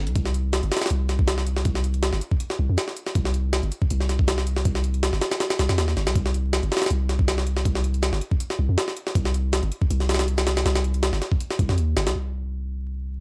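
A deep, sine-toned 808-style bass opens this dark, frenetic jungle and drum and bass excerpt, its long notes striking with a fast attack and then decaying in the low register. Almost at once a sampler-style jungle kit joins, its hi-hat, thumpy kick and high-tuned snare sounding compressed, pitched up and gritty, with a tape-like warmth and a small room ambience around them. Both parts sit up front, the mellow bass holding down the bottom while the drums drive with a slight swing on the sixteenths. A haze of vinyl crackle and lossy compression artefacts colours the recording, giving it a worn, digital sheen. The drums stop at 12.2 seconds, leaving the bass alone in a short closing section until the cut at 13.2 seconds.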